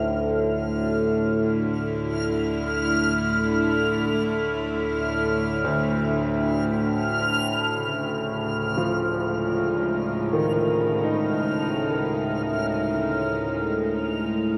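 Unsettling and desolate, this dark ambient drone in free time, cut from a longer piece, rests on an up-front, resonant drone of moving, ring-modulated overtones beneath a nasal, earthy chamber cello section whose bowed, lightly vibrato chords fade out, while a reversed, granular texture swells high above, a clear grand piano with vintage sustain enters at 5.6 seconds with arpeggios through a diffuse delay, and the harmony shifts from D minor to C sharp at 7.8 seconds inside a huge, wet reverb.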